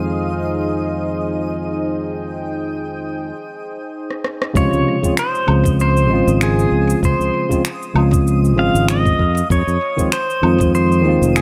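A clean pedal steel guitar, played with fingerpicks and slide and full of volume swells, carries the melody through an analog delay from 4.6 seconds in this relaxed sunset chillout excerpt at 97 BPM with a light sixteenth-note swing, moving from Fm7 to Dbmaj7 and back. Beneath it, a bright tine electric piano with tape echo and a fingered electric bass play throughout, while a twinkling granular texture sparkles in the background and a lush, detuned unison pad with chorus warbles through the opening 4.5 seconds. A layered kit of electronic rim click, shaker, finger snaps and woodblock enters with a fill at 4.1 seconds and is joined by a gritty, thumpy compressed kick, all in an echo-heavy mix with a moderate chamber reverb.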